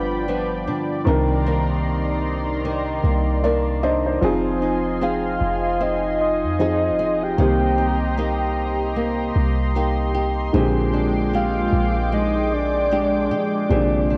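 A round, detuned octave-layered synth lead with chorus, phaser, vibrato and analog delay enters at 5.0 s to carry the melody in this dreamy, smooth contemporary R&B excerpt at 76 BPM on swung sixteenths, over a worn baby grand piano, fingerpicked flamenco guitar arpeggios, a lush, bright, warbling unison pad with chorus and a deep, boomy 808-style bass sitting up front, while the piano, guitar, pad and lead carry a cassette-tape character in a small, lightly reverberant room as the chords move from G7 and Cm9 through Fm7 and Cm7 to Bb13.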